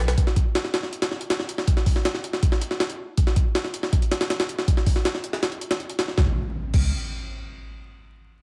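Dark and raw, this drum and bass excerpt cut from a longer jungle piece centres on an up-front, compressed sampler-style kit of thumpy kick, high-tuned snare, hi-hat and crash, pitched up and gritty with a tape-warm tone and the air of a large room, over vinyl crackle and little reverb, while a deep, round, soft sub bass appears only briefly at the start and again at 6.2 seconds, when an electronic impact lands.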